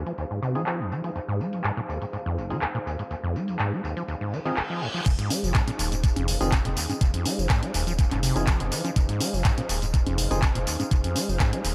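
Gritty and raw, this excerpt of acid house moves at 123 BPM in a straight 4/4, sitting in F minor pentatonic over an Fm7 chord. A squelchy, resonant sawtooth acid bass drives the riff up front from the start, roughened by overdrive and cassette tape, pumping against the sidechain and trailing dub echo. Beneath it a deep, moody pad of detuned unison saws spreads a slow-attack, chorused haze with its own reverb, while a punchy analog drum machine, re-recorded in a large room, supplies congas, handclaps, hi-hat, tambourine and crash through low-pass filters and dub echo. A very quiet, hollow organ stab pecks in from 0.6 seconds under a filter sweep, and a reverse cymbal at 4.4 seconds leads into the drop at 5.1 seconds. There a thumpy, sampler-style electronic kick and a round sine sub bass arrive, filling out the low end of an echo-heavy mix with light digital ambience.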